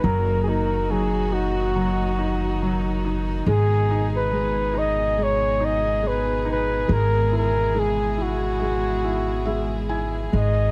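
Melancholic and reflective, this acoustic folk-pop ballad moves at an unhurried 70 BPM in a straight 4/4, heard here as a short excerpt cut from a longer piece. A breathy flugelhorn carries the melody up front, its soft attack, gentle vibrato and whispered, jazz-style phrasing giving the solo an intimate, mellow voice. Beneath it, a felt-muted upright piano supplies soft accompaniment with a thin felt tone and short sustain, while a chamber string section holds sustained chords, bowed sul tasto with light vibrato for a close, warm ensemble sound. A pizzicato upright bass on steel strings sits up front with a woody, thumpy, dark low end. The harmony moves from D#m/F# to G#m at 3.5 seconds and to E/G# at 6.9 seconds, all wrapped in light reverb.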